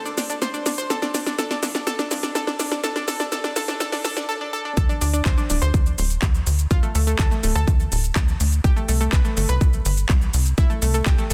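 A punchy, up-front electronic kick lands at 4.8 seconds to open the drop in this bittersweet, expansive progressive house excerpt at 124 BPM, joining a tight, wave-folded sawtooth sequencer bass with sidechain pumping, a round, chorused analog pluck playing delayed arpeggios, and a big-room drum kit with a huge snare, crisp hats, cabasa and handclaps whose fill drives the build-up, all over chords moving from D5 through G5 and back to D5 before reaching Am7, in a dense, heavily limited mix with light digital ambience.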